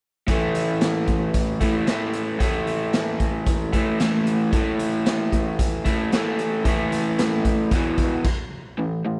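A straight, steady 4/4 pulse drives this gritty, raunchy blues rock and southern rock cut, the drums and guitar both entering at 0.3 seconds in the manner of a power trio. An overdriven electric guitar plays a picked, double-tracked riff up front, its crunchy, warm tone sitting low in the register and built on an A5 chord that shifts to E5 late in the passage. The raw acoustic drum kit, also up front, drives with a punchy kick, a medium-tuned snare, hi-hat and crash cymbal, its saturated sound carrying a rolled-off top and a pumping, bright stone-room character. A stop arrives at 8.2 seconds; the drums end at 8.4 seconds, and the guitar sounds until 9.2 seconds. Light reverb frames this short excerpt, cut from a longer piece.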